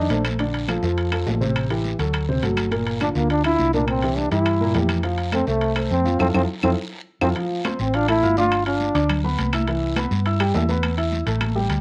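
A close-miked trombone with a soft attack and vibrato stands up front in this sunny, danceable Afro-Cuban jazz passage, cut from a longer piece at a brisk 207 BPM in a straight 4/4. After a brief opening note, it plays its jazz-style solo line from 3.0 s to 9.2 s. A warm, natural baby grand piano with short sustain and a cassette-tape color comps through chords like Bbmaj9, Am7, D7 and Gm7, while a dark, round, punchy hollow-body electric bass sits up front. The percussion blends high-tuned, thick-skinned congas and woody claves in the background with ringing metal-shell timbales and a raspy guiro. A band accent and drum fill lead into the move from F major to D minor at 7.4 s, where chords such as Dm9, G7 and Cmaj7 follow before a closing fill. The whole track has the light reverb and homespun character of a home cassette recording.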